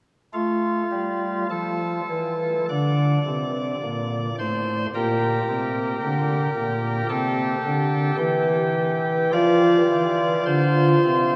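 A vast, echoing space wraps the sound in a long, heavy reverberation, yet the organ stays up front, its cornet stop nasal with a touch of chiff. This reverent, serene fragment of a classical chorale-style piece in 4/4 is played solo on a pipe organ in baroque voicing from 0.3 to 11.4 seconds, moving with a gentle rubato through F, Gm/Bb and C before settling on an open F5.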